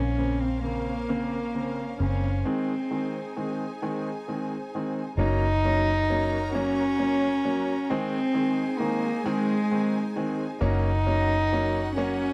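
Heartfelt and swaying, this short pop fragment moves in a slow, lilting 6/8 with a straight feel. A dark cello carries the melody up front, its single bowed voice nasal and reedy with a gut-string, period-style tone and light vibrato. Beneath it, a lush studio string section holds smooth, even sustained chords, while a muted fingered electric bass sits up front, punchy with a round, amped sound. A warm concert grand piano enters at 0.2 seconds with intimate accompaniment, its long sustain and audible action noise adding presence. The harmony drifts from Bbmadd9 through Ab and Gb, with a break from 2.5 to 5.2 seconds before a new section begins, all captured in a dry, close 1970s-style studio sound.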